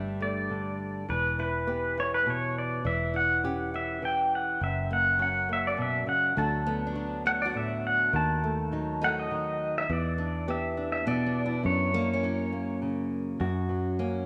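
A wet spring reverb with a long 2.6-second tail washes over this reflective, heartbroken acoustic folk-pop ballad, cut from a longer piece and moving at 102 BPM in a straight 3/4. A twangy, compressed pedal steel guitar, played with fingerpicks and full of slide and volume swells, sits up front and carries a solo from the start to 13.4 s. Beneath it, a small, fingerpicked nylon-string guitar with fresh strings and finger squeak shares the foreground, while a round, dark, foam-muted fingered electric bass anchors the chords through Gsus2, Em, C#dim/E and F#. A jumbo, full-bodied picked steel-string acoustic guitar adds arpeggios from 6.7 s.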